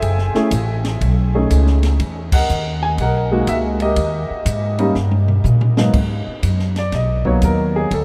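An up-front, warm baby grand piano carries the melody in this late-night, cool jazz piano trio excerpt in G# minor, swinging at 122 BPM in 4/4 over chords such as F#m9, B13 and Emaj9#11. A woody, pizzicato upright bass with steel strings and a compact cocktail drum kit with dark cymbals, a high-tuned snare and a punchy kick support it, with a band accent at 2.2 s and a drum fill before the piano takes a solo at 5.9 s. A huge ambient reverb sets the trio in a vast, echoing space.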